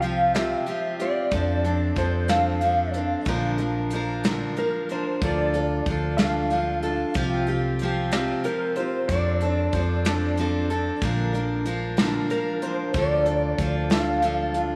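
Folk rock with a heartland rock lean, this reflective, dusty excerpt sways in a slow 6/8, bathed in a long church reverb that gives the mix a dreamy haze. A dark, compressed lap steel carries the melody with slide and volume swells, colored by ensemble chorus and a diffuse ambient delay, while a bright, up-front picked steel-string acoustic guitar, finger squeak and all, supplies the accompaniment. Underneath, a round, hollow-body short-scale electric bass and a soft brush kit with a tight kick and medium-tuned snare hold the low end as the chords cycle through Csus4, F6, Bb and Dm.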